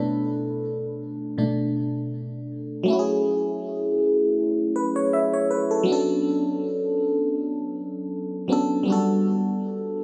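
A glassy FM electric piano carries this short R&B passage on its own, its bell-like, fast attack giving way to a decaying tone with a noise layer beneath. Sitting up front, it spans from B2 to E5, colored by chorus, phaser and delay that add a gentle shimmer. The mood is tender and smooth, set in 4/4 with a light swing on the sixteenths. The harmony moves from Bm7 to F#m7 at 2.9 seconds, returns to Bm7, and settles on Gmaj7 at 8.9 seconds, with a new section beginning at that first change. Captured on a phone in the room, the sound carries studio ambience, light reverb and compression, and the passage is cut from a longer piece.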